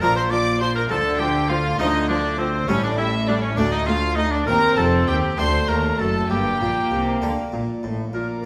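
A dramatic, stormy baroque-style concerto movement in a straight 6/8, cut from a longer piece, where a clear solo oboe with light vibrato shares the melody with a rich, smooth-topped gut-string violin section, over a background second violin line, warm viola and cello parts, a full Italian-style harpsichord and a reedy double bass section, all bowed strings in period style, set in a wet recital hall.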